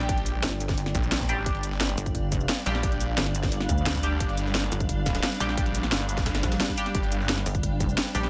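A straight 4/4 pulse at 175 BPM drives this dark, futuristic excerpt of technical drum and bass in G minor, where a punchy, tape-warm electronic kick and an overdriven, up-front drum kit with cracking snare and bright hats sit over a very quiet, gritty breakbeat sampler kit, while a growling distorted saw bass with a moving notch and a pulsing, mellow chorused wobble bass share the low end beneath a swarming, granular drone with sidechain pumping, nasal band-passed chord stabs coloured by phaser, chorus and delay, and a faint electronic swell at 6.4 seconds.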